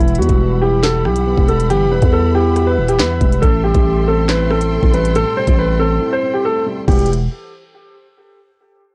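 From the first second, a menacing half-time drill groove carries a natural, up-front concert grand piano melody, filtered and soaked in tape echo, over a mellow, boxy second piano and lush bowed strings with expressive vibrato, while a growling, buzzy 808 bass and an electronic kit of knocking kick, sharp snare, crisp hi-hats, handclaps, rim clicks and crash, roughened by 12-bit sampler grit, push through a dry, cassette-worn small room until a break at 6.0 seconds in this short cut from a longer dark piece.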